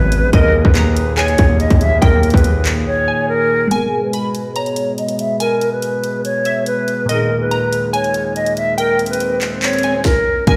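Dark and hard-hitting, this half-time trap cut is taken from a longer piece and led by a hollow concert flute that sings a pure, vibrato-touched melody up front, softened by a low-pass filter and trailed by tape echo. Above it, a crystalline wavetable pluck warbles through chorus and tape echo as a second line, while a pipe organ on foundation stops holds thick, romantic sustained chords beneath. The distorted 808-style bass hits heavy and saturated in the opening stretch, dropping out by 2.8 seconds, and a trap kit of hard-clipped kick, sharp snare, bright hi-hats, handclaps and rim clicks punches up front throughout. After a short break, glassy, detuned digital keys enter at 3.7 seconds with a filter sweep as the harmony shifts from a suspended chord to a minor add-nine. An electronic swell and impact rises in the background from 9.0 seconds, all set in a large studio reverb that sounds like a big system playing in a bare room.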